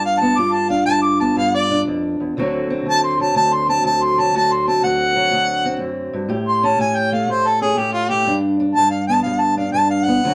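The recording has a dark production with light reverb, giving this short acoustic country blues cut from a longer piece a laid-back, swaggering mood. A mellow harmonica carries the melody as a solo from 0.0 to 10.3 seconds, playing in a jazz style with light vibrato and a soft attack; it sits up front yet has a distant, roomy quality. Underneath, a boxy, parlour-style steel-string acoustic guitar is fingerpicked throughout as accompaniment, also placed up front. The groove is a swung 4/4. The harmony moves from G7 to D7 and then A7 before landing on G.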